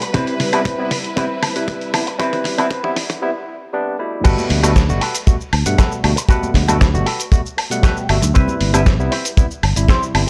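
A straight 4/4 nu-disco groove at 117 BPM in G major, this sunny, groovy passage opens with a build-up. A tight, dry kick sits up front with a gritty, compressed sampler-style kit of snare, hi-hat, shaker, crash, woodblock and toms rolling through a drum fill, while a lush bowed string section pumps in the background until 3.2 s. Meanwhile a twangy envelope-filtered electric guitar picks a riff through tape echo, and a barky tine electric piano with 12-bit sampler grit sets out Cmaj7 and Gadd9 under a filter sweep. After a brief break, the drop lands at 4.2 s on Gmaj9, bringing in a growly fingered electric bass and very quiet, high-tuned congas played with hard hands, and a clean guitar fill arrives at 7.6 s before the harmony returns to Cmaj7.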